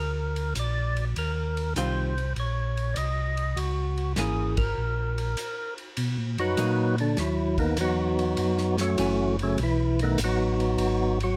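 Swung eighth notes in 4/4 drive this soul jazz organ trio clip, cut from a longer piece, with a swinging, soulful mood. A fat, lightly overdriven tonewheel organ with percussive third-harmonic attack carries the melody through a slow rotary speaker and plate reverb. It sits up front beside a second tonewheel organ that plays the bass line in a mellow, round, clean tone with chorus vibrato and its own slow rotary. An acoustic soul drum kit, dry and set a little further back, plays hi-hat, kick, ride cymbal and snare, with dark cymbals, a medium-tuned snare and a tight kick. A picked, compressed hollow-body electric guitar adds dusky accompaniment from 1.8 to 9.4 seconds. The band hits an accent and drops into a brief break, and at 6.0 seconds a tonewheel organ takes a solo over major seventh, minor seventh and dominant chords, all captured with close, detailed microphones and light reverb.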